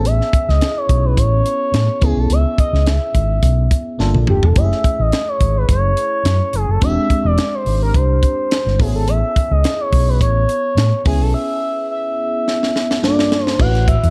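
A smooth, expressive sawtooth synth lead with vibrato and chorus carries the melody up front in this bittersweet, slick slice of polished 1980s jazz-funk pop at 106 BPM in 4/4, with a light swing on the sixteenths. Beneath it, a glassy, bell-like FM electric piano treated with phaser and lush chorus plays chords that move from Amaj7 through C#m7, Gm9, F#m9 and E7alt. A round, overdriven fingered bass and a tight, acoustic funk kit with a high-tuned snare sit forward in a dark, small-room production, with drum fills at 4.0 and 12.5 seconds and a break from 11.3 seconds before landing on A6.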